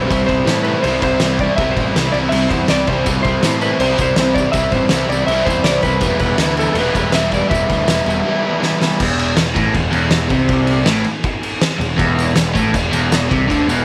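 This raw, swaggering garage rock clip is a short cut from a longer piece, set in a small room with light reverb. An oversized, low-tuned acoustic drum kit sits up front, with a fat snare, punchy kick and dark crash and ride cymbals in a gritty, pumping stone-room sound. A bright, double-tracked overdriven electric guitar drives the riff over C and then E minor, while a fuzz-soaked picked electric bass adds weight underneath. An electric slide guitar, played with fingerpicks and slightly broken-up, carries the melody until 8.6 seconds, when a drum fill leads into a new section at 9.0 seconds with the chords dropping out. A jingly tambourine enters at 3.1 seconds, distant and in the background.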